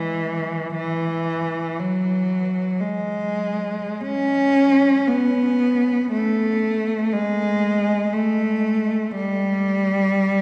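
A single bowed cello carries this nostalgic, lyrical classical excerpt, its rich, focused tone and vibrato sitting close and up front as it sings between E3 and C#4 for about 10.4 seconds. The unaccompanied line moves freely and expressively, cut from a longer piece. A cathedral-like reverb with a 5.2-second decay surrounds the instrument, lending the church or concert-hall setting a lingering, spacious glow.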